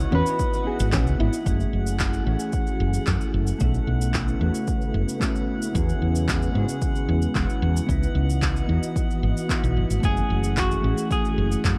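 Sunset chillout at 112 BPM in a smooth, warm mood, this short cut from a longer piece sets a woody, up-front fretless bass and a punchy electronic kick entering at 0.4 seconds under electronic cabasa, congas and handclaps, a dark, clean mellow electric guitar with digital delay, a silky string machine with ensemble chorus in the background, a soft round pluck playing arpeggios only until 1.3 seconds, and a glassy, drifting harmonics texture, while a bright, picked semi-hollow guitar through phaser and delay states the melody briefly at the start and returns at 10.0 seconds over chords moving from C#m11 through F#m9, B9sus4 and E6, all bathed in light reverb and a worn, warbling cassette-tape drift.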